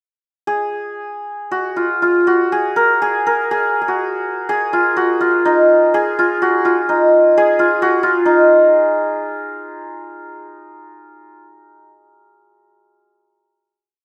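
A solo santur opens at 0.5 s, its hammered strings bright and shimmering as it sets out a theme in raga Bhimpalasi on Eb. This short, complete Indian classical piece carries a longing, introspective mood, moving in 4/4 with a straight feel and tuned slightly below standard pitch, at A4 = 437 Hz. The tempo quickens throughout, rising from 117 to 148 BPM as the santur blends a composed line with improvisation inside a rhythmic cycle, staying within the range Eb4 to Bb4. At 8.3 s the theme gives way to a final note that rings until the instrument falls silent at 11.9 s. Close, detailed microphones keep the santur up front, with a light reverb around it.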